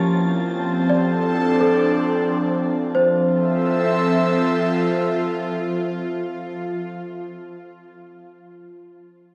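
In a slow, straight 3/4 at 63 BPM, this ambient excerpt in F major floats with a weightless, peaceful calm. A soft, breathy pad sits up front, holding bright sustained chords with a chorus shimmer, moving from Dm7/F to Fmaj7 at 3.0 seconds. Beneath it, a string-like drone with a tense, detuned edge and vibrato hums low in the mix, while a wind-like tuned noise texture drifts high in the background until 3.0 seconds. From 0.9 seconds, a worn celesta plays delicate, sweet arpeggios, its bell-like tone slightly out of tune and trailed by tape echo. The whole excerpt sits in a wet concert-hall reverb that lets each sound hang in the air.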